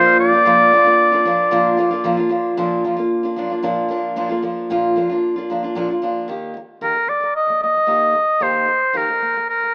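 A straight 4/4 pulse at 113 BPM carries this sunny, heartfelt pop fragment in Eb major, cut from a longer piece and tuned slightly low to A4 = 438 Hz. A picked steel-string dreadnought acoustic guitar plays accompaniment throughout, its old strings giving a dark, woody, full-bodied tone placed up front. A classical-style solo oboe carries the melody with a smooth top, touched by tape echo, sounding first from 0.0 to 1.7 seconds and returning at 6.8 seconds to close the passage. The harmony rests on Bb before moving to Eb at 6.3 seconds, where the final section begins. Light reverb and small-room ambience frame a rough home-demo mix with an AM-radio character.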